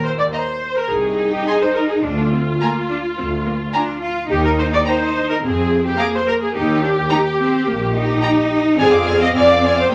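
Up-front violas, rich with vibrato, and smooth, even double basses open this cheerful, spirited excerpt of a quick classical-period movement for string orchestra in Eb major, moving at 107 BPM in 4/4. At 0.3 seconds a clear, focused violin section takes the high melody above a second violin line with a smooth top, and at 0.9 seconds close, bowed cellos join the bass. A moderate large studio reverb gives the lush sections a sense of space.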